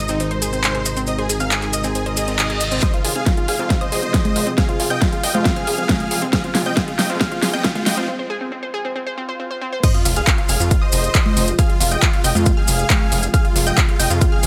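Uplifting trance at 137 BPM in 4/4, bittersweet and emotional, this excerpt moves from an Ab chord to Fm at 2.8 seconds. A huge, euphoric supersaw lead carries the melody with dub echo and sidechain pumping, over a shimmering, ethereal pad holding sustained chords in the background and a gritty, aggressive synth bass with a resonant, saturated edge. A round, vintage analog pluck spins arpeggios with chorus and echo through a filter sweep during the build-up, then stops at 9.8 seconds. A lush, very quiet unison pluck adds a second line from 2.8 seconds, when a punchy, overdriven electronic kick joins the big-room kit with its huge snare, metallic hats, handclaps, congas and crash. Grainy maracas sit in the background during the opening, fall silent at 2.8 seconds and return at the drop. Very quiet sound effects bring a reverse cymbal, riser, swell and sub drop, and after a drum fill and a brief break the drop lands at 9.8 seconds with an impact. 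The mix carries light reverb and a digital ambience.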